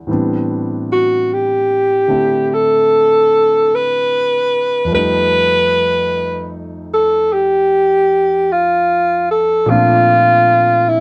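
Intimate, tender jazz ballad in a slow swing, cut from a longer piece: a natural-sounding grand piano comps softly underneath, its action noise audible, moving from Am11 to F7 and on to Bbmaj9. At 0.9 s a breathy alto saxophone enters up front with the melody, its subtoned, vibrato-laced voice carrying the tune in a sensitive jazz manner. The close, dry 1970s-style studio sound carries only light reverb, keeping the pair sounding warm.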